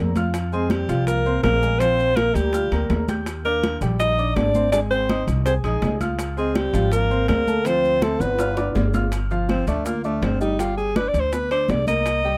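A smooth grand piano and a woody, thumpy upright bass played pizzicato open this driving, sultry Afro-Cuban jazz excerpt, joined at once by bright congas, round low-tuned bongos, ringing timbales and grainy maracas in the background, before a clear alto saxophone with light vibrato and scooped notes takes the melody up front over a raspy, growling trombone second line that drops out at 8.8 seconds, during a drum fill and ahead of the saxophone's solo from 9.1 seconds in a close, detailed room with light reverb.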